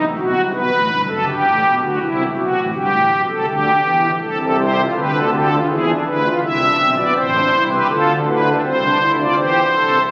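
A straight 4/4 pulse at 82 BPM drives this solemn classical piece, a baroque-style three-part fugue in A minor cut from a longer work, played solo on a pipe organ's strings celeste stops, whose soft, shimmering, romantically voiced tone sits up front from 0.0 to 10.0 s across a range of F#1 to E5, moving from B7(no3) through Em/G, Am/C and E7 to Am and then Am/C inside a wet cathedral reverb with a 5.7-second decay, captured on a phone in the room.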